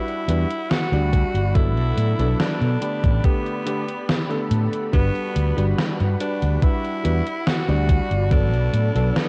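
Vaporwave at 71 BPM in G major, this faded, nostalgic fragment of a longer piece drifts through Gmaj7, Bm7 and A9sus4 chords on a worn, warbling cassette sound with pitch drift and little reverb. A raspy tenor saxophone carries the melody with edgy vibrato and scooped notes, close-miked and roughened by 12-bit sampler grit and tape echo. A clear electric grand piano with clangy lows and long sustain accompanies from the start, its subtle chorus and sampler grit adding a vintage sheen, while a muted string section holds dark, veiled bowed chords in the background. A gated 80s drum machine enters at 0.1 seconds with hi-hat and a gated reverb snare, the round fretless electric bass follows at 0.3 seconds up front, and a thumpy electronic kick joins at 1.1 seconds, the drums sounding tape-warm and re-recorded in a small room.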